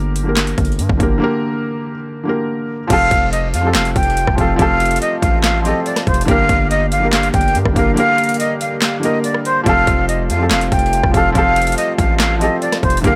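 A felt-muted upright piano and a distorted 808-style bass open this menacing, melancholic trap excerpt at 142 BPM in a half-time feel, with the soft, intimate piano sitting up front, its short sustain and audible action noise dulled by a low-pass filter. The saturated 808 is heavy and aggressive, a sine tone with a noise layer and a fast attack that decays. An overdriven trap kit joins almost at once, with a hard-clipped kick, sharp snare, metallic hats, handclaps, rim clicks and crash cymbal, before a break from 1.2 seconds. At 2.9 seconds a breathy jazz flute takes the melody up front, expressive with vibrato, a soft attack and lifted highs, softened by a low-pass filter and trailed by delay, while a French horn section holds smooth-topped, classical-style chords with light vibrato in the background. The harmony moves between G minor and F add9, the kick drops out between 8.0 and 9.7 seconds, and a small room ambience surrounds the parts.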